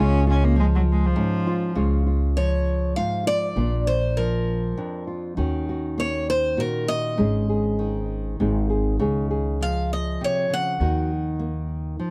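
A picked steel-string parlour guitar with old strings and a boxy, woody tone carries the melody from 2.4 s in this gentle, warm acoustic folk excerpt in 3/4 at 100 BPM in Db major, after a nasal, intense bowed cello with light vibrato takes a short solo until 1.8 s, while a thumb-plucked classical nylon-string guitar accompanies, a pizzicato upright bass holds the low end, and the recording has a dry, close 1970s-style studio sound with light reverb.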